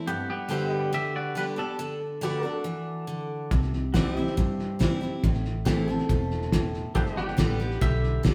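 A clean, twangy electric guitar plays its bright, compressed second line at 0.1 s and again at 7.0 s in this down-home, heartfelt honky-tonk and classic country excerpt at 140 BPM in G major, over an up-front, full-bodied picked dreadnought acoustic guitar and a fingerpicked pedal steel holding sustained slide chords with volume swells through G, D, C, Am and back to G, while a dark, foam-muted vintage bass and a gritty, muffled, cloth-damped drum kit with a fat snare and tight kick join at 3.5 s, the band sounding live together in a stone room.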